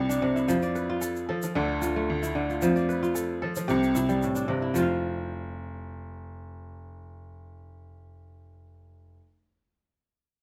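A lightly reverberant, up-front sound frames this joyful West African string and xylophone excerpt in F lydian at 112 BPM, where a crisp, ringing fingerpicked kora spins arpeggios over F, Dm and C, a brilliant baby grand piano carries the bass line, and a grainy, close, dry egg shaker adds percussion until 5.0 seconds.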